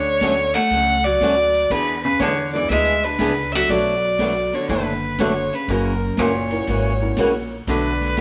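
A dark, woody fiddle carries the melody up front in this cheerful western swing excerpt, bowed sul tasto by a single player with light vibrato. At 121 BPM in a swung 4/4, the band plays live in one stone room with a wet reverb, the chords moving through Dmaj7, E7, Bm7 and F#7. A clean, compressed hollow-body archtop guitar, miked and amplified, picks a second line beneath it, while a thumpy gut-string upright bass plucks the low end. From 0.2 seconds a bright, boxy steel-string acoustic guitar with fresh strings and audible finger squeak adds picked accompaniment, and a smooth big-band drum kit swings in the background on hi-hat, ride, snare and a punchy kick, its top rolled off. At 2.5 seconds a mellow, worn upright piano joins in the background, slightly detuned, with its action noise giving an intimate touch.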